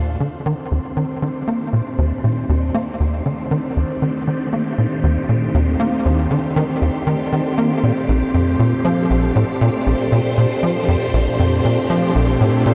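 A tight, punchy sequencer bass drives this expansive, luminous piece of ambient space music, its nasal sawtooth and square-wave riff shaped by a fast filter pluck and sitting up front with ensemble chorus and delay. Alongside it, a vintage string machine fades in from the opening, also up front, holding bright, swirling sustained chords treated with ensemble chorus and phaser. From 0.4 seconds, an airy, breathy wind-like layer of tuned noise adds a mellow haze, carrying its own built-in reverb. The harmony rests on one chord before shifting at 8.1 seconds, in a steady, straight four-beat pulse. A lush hall reverb and a dark, warm production give the cut from a longer piece a deep, spacious glow.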